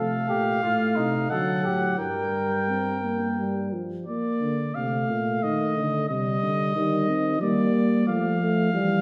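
A brass ensemble opens together in a short classical excerpt of an imitative canzona in triple time, elegant and lively in mood. The trumpet carries the melody up front in its upper register, its tone warm, while a mellow, distant flugelhorn sings a second line that drops away at 3.7 seconds. Beneath them, a dark euphonium with light vibrato and a smooth top supplies the accompaniment, and the tuba anchors the bass with a soft attack and vibrato. The harmony moves from a diminished chord through minor and major colours, settling on a major ninth at the close, with the second half beginning at 4.1 seconds. The ensemble is heard from further back in a recital hall, its wet reverb lending a spacious glow as the excerpt cuts off at 9.0 seconds.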